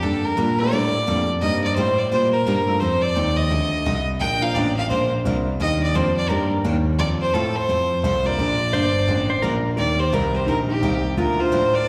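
Cheerful and playful, this short western swing excerpt bounces along in a swung 4/4 with a lively country feel. A clear, earthy fiddle carries the melody up front with light vibrato and a slapback echo, while a dark, boxy grand piano holds down the bass line. A bright picked acoustic guitar with fresh strings and a woody, slightly detuned upright piano sit in the background as accompaniment, the upright entering at 0.6 s with audible action noise and its own slapback echo. Brief second lines arrive late: a compressed electric lap steel plays a slide phrase from 8.7 s, and a vintage hollow-body jazz guitar follows at 9.8 s with a clean, picked tone. The whole performance sounds like a live gig heard through a venue's PA, bathed in plate reverb and the generous ambience of a recital hall.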